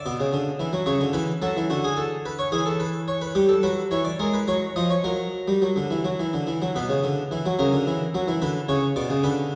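Rhythm comes first here, with a 6/8 metre at 72 beats per minute in dotted quarters, played straight and with a joyful, lively spirit. This short cut from a longer baroque-style two-part invention features a solo harpsichord in a Flemish style, ranging from B2 to D#5 and tuned slightly low at A4 = 437 Hz. Its plucked tone is full and brilliant with octave strings, close and up front in its own character, yet set within the long reverb of a recital hall heard from further back. The harmony moves through bright E-centred chords and a turn through C#7 to F#, and then at 6.8 seconds a new section settles into B minor through F#7. The passage closes on B minor at 9.6 seconds.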